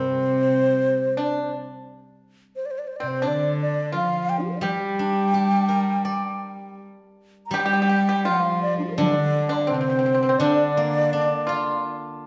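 Chinese traditional chamber music in G yu mode, tender and graceful, moving at 84 BPM in 4/4 with a rubato feel and uneven beats, in an excerpt cut from a longer piece. An end-blown bamboo xiao leads the melody up front, breathy and bright with vibrato and tongued, expressive phrasing. Beneath it, a dry, percussive fingerpicked pipa sits up front on a second line, while a bowed cello, soft-attacked and airy with light sul tasto vibrato, carries a close, intimate second line. A silvery, ringing steel-string zither supplies accompaniment and sounds on alone to 12.3 seconds after the others stop at 11.8, all set in a recital hall reverb with a 1.4-second decay.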